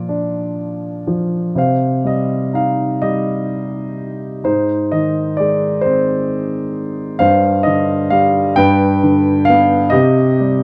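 A polished grand piano sits up front as the sole voice in this brief classical passage, its long sustain ringing through a 6/8 metre with uneven, rubato phrasing that feels wistful and reflective. After a short opening on Bb, the harmony settles on C minor at 1.6 seconds, moves through Ab, then leans on Gsus4 and G before returning to C minor at 9.9 seconds. Light reverb and a dark, warm production frame the present piano tone.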